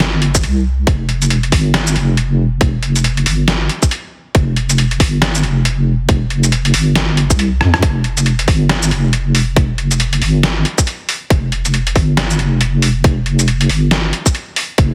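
A swung, half-time groove drives this dark, heavy deep dubstep excerpt, where a deep, saturated wobble bass with chorus sits up front beside a gritty, pitched-down trip hop sampler-style kit of hi-hat, rim click, shaker and overdriven snare, a tight, layered electronic kick joins at 0.3 seconds, and a drum fill at 7.6 seconds leads into the second drop, the whole mix bathed in light digital ambience with a heavily compressed, radio-like sound.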